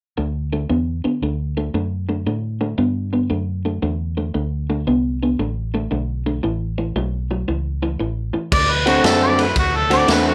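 A swung 4/4 shuffle at 115 BPM rolls along in D mixolydian, giving this brief cut from a longer electric blues piece a soulful, rollicking mood. From 0.2 seconds, an up-front electric guitar through a small old amp picks a slightly broken-up, lo-fi riff, paired with a dark, round, foam-muted vintage bass. The harmony sits on D, moves to A at 6.4 seconds, and lands on D7 when the second section begins at 8.5 seconds. There a mellow, overdriven harmonica takes a jazz-style solo with light vibrato and scooped notes. It arrives together with a raw garage drum kit whose punchy kick, medium-tuned snare, ride and crash sound gritty and saturated, with a rolled-off top in a bright stone room. Light reverb sits over the whole mix.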